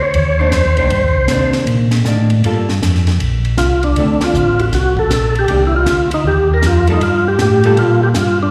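A swung 4/4 groove at 157 BPM drives this smoky, bluesy soul jazz organ trio fragment in G minor, cut from a longer piece and heard through a live venue's PA with recital hall reverb and small room ambience. A full, lightly overdriven tonewheel organ with key click, second harmonic percussion, chorus vibrato and slow rotary speaker carries the melody up front with slapback echo, while a mellow, round, clean second organ voice, also on slow rotary, plays the bass line from the start. A dry cocktail kit with punchy kick, high-tuned snare and dark cymbals sits back in the mix alongside a picked, hollow-body archtop guitar comping through slapback echo, and the band hits an accent together at 4.2 seconds over chords moving from Cm9 to Gm9 and D5.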